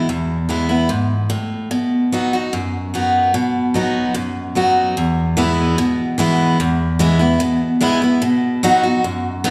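A straight, even 4/4 pulse carries this easygoing country cut, taken from a longer piece and built on a steady alternation between E and B chords. A picked steel-string acoustic guitar plays alone throughout, its dreadnought body giving a full-bodied, bright tone with the snap of fresh strings and a touch of finger squeak. The guitar ranges from low E2 up to F#4 and sits up front, even as a wet recital-hall reverb places the listener further back in the room, lending the sound a lingering, spacious glow. The opening passage gives way to a second section at 5.0 seconds, returning to E before settling on B again at 8.2 seconds. The mood is nostalgic and relaxed, like a fond look back.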